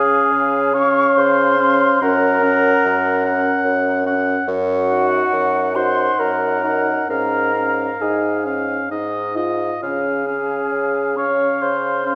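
Bathed in a wet scoring-stage reverb, this tender, rubato slow movement for wind quintet in triple time sets a hollow, airy flute melody over a soft-attacked oboe second line with vibrato, while a dark clarinet and a smooth-topped French horn fill in the accompaniment and a present, up-front bassoon carries the bass through this 12.2-second extract from a longer piece.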